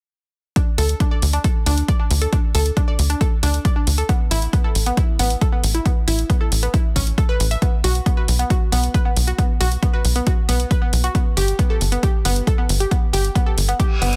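Soaring and euphoric, this uplifting trance passage, cut from a longer piece, runs on a punchy, overdriven electronic kick drum and a gritty hi-hat, with a tight, nasal sequencer bass saturated by tube warmth and pumping up front from 0.8 seconds. Above them, a detuned, wave-folded analog pluck spins bright arpeggios through chorus, delay and sidechain pumping, moving from D5 to B5 chords with stretches of open space between. The dry, dense, heavily limited mix closes with a reverse cymbal at 13.9 seconds.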